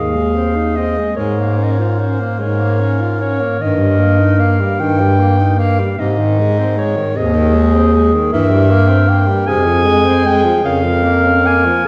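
Heard from further back in a reverberant concert hall, this fragment of an elegiac, yearning classical piece for single-reed quartet moves at 51 BPM in a rubato 6/8 in Ab major, with a mellow, smooth-topped clarinet singing the melody over a dark, distant second clarinet line, a soft-attacked tenor saxophone accompaniment and a warm bass clarinet sitting up front in the bass.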